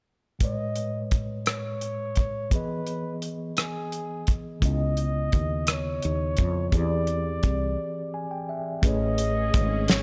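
A breathy, whispered flugelhorn sings an intimate jazz-style melody over mellow tine electric piano and a cloth-damped, thuddy drum kit with a fat snare in this slow, sensual six-eight R&B excerpt at 57 BPM, set in a small room and moving through Amaj9, Emaj7, C#m9 and E7alt, with a dark, round fretless bass joining at 4.6 s, the electric piano taking a short fill during a break at 7.8 s, and a lush bowed string section entering in the background at 8.8 s as the harmony returns to Amaj9.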